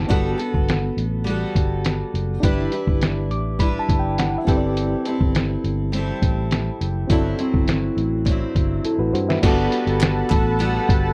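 Indie pop with a laid-back bedroom pop haze, this excerpt from a longer piece rolls along in a straight 4/4 over lush chords moving from Gmaj9 and Gmaj13 to Am7/G and Am13/G. Up front, a picked jumbo steel-string acoustic guitar rings full-bodied with subtle chorus and vibrato, beside a dark, round, foam-muted fingered electric bass with a punchy, amped tone. The lo-fi sampler-style drum kit sounds compressed, pitched down and muffled, with a thumpy kick, medium-tuned snare, hi-hat and crash cymbal that seem tape-coloured and re-recorded in a small room, and a drum fill arrives at 8.8 s. A reedy, worn electric piano, slightly out of tune and heard through built-in speakers, carries fast tremolo and cassette tape character, and it plays a fill from 3.0 s. At 9.4 s a smooth, detuned sawtooth analog pad with a soft attack enters on bright sustained chords treated with chorus and tremolo, and at 10.0 s a crisp, human group handclap pops up briefly. 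The dry, close 1970s-style studio sound with light reverb keeps the whole mood intimate and relaxed.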